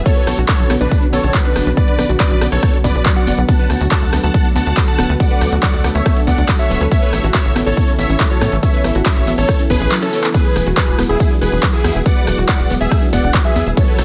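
Uplifting trance at 140 BPM in a euphoric, driving mood, this excerpt moves through Bmadd9, D, A and Eadd9 as a huge, bright supersaw lead with phaser and delay carries the melody over a thick, warbling pad with chorus, a mellow square-wave second lead and a wave-folded pluck arpeggio in the background. A punchy, overdriven kick sits up front beside a tight sawtooth-and-square sequencer bass from 0.3 seconds, while a big-room kit of handclaps, metallic hats, ride, rim click and tambourine drives the groove and most parts pump with sidechain compression. The kick drops out at 9.9 seconds for a drum fill, and the mix carries light reverb and a digital ambience.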